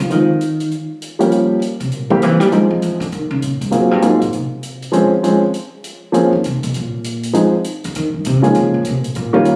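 An upright bass takes the solo here, plucked on gut strings with a woody, dark and thumpy tone that sits up front from 0.0 seconds, ranging from F2 to Ab3. This is a swinging jazz piano trio section cut from a longer piece, moving at a brisk 199 BPM in 4/4 in Ab major, with a warm, sophisticated mood. A warm baby grand piano carries the melody between Eb3 and Ab4, intimate and natural with a short sustain, its action noise audible and its level the loudest of the three parts. A hi-hat sits low in the mix, acoustic and natural with a small-room character. The harmony moves through jazz colours such as Gm7b5, C7, Ab13, Dbmaj7 and Bbm9, with a brief break from chords at 6.7 seconds before moving to Ab6 and closing on Bbm7. Captured on a phone in the room, the trio carries a light club reverb and compression, giving the sound a close, live feel.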